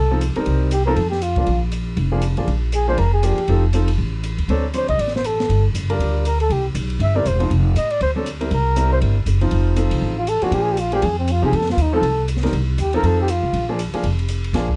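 A warm flugelhorn with soft attacks, vibrato and scooped notes carries the melody up front in this playful, relaxed excerpt of small-group swing and bop at 239 BPM in F mixolydian, over growly pizzicato upright bass, a bright upright piano with audible action noise and long sustain, and a smooth small-room drum kit of dark cymbals, medium-tuned snare and punchy kick, all in a dry, dark-toned mix.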